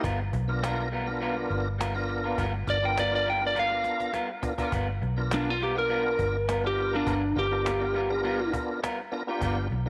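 A gritty, swaggering soul blues excerpt in G mixolydian at 102 BPM opens on a G7#9 chord with a full tonewheel organ churning through a slow rotary speaker with overdrive and chorus vibrato, twangy lo-fi stabs from an electric guitar through a small old amp, a dark, round, foam-muted vintage fingered bass sitting up front with transformer saturation, and a snappy cajon played with soft hands, before a slightly broken-up, compressed lead guitar enters at 2.7 s, the cajon plays a fill at 3.6 s, and the lead takes a solo from 4.7 s inside a moderate echo chamber.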